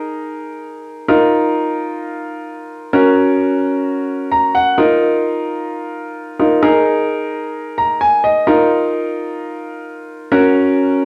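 A clear, polished baby grand piano plays alone, up front and present through a cassette-tape and analog-delay sheen in a wet small room, carrying a driving yet melancholic pop passage in Eb minor at 130 BPM in straight 4/4, drifting over Absus2, Ebsus2 and Gb chords between Db4 and Bb5 with brief fills at 4.1 and 7.5 seconds in this 11.1-second cut from a longer piece.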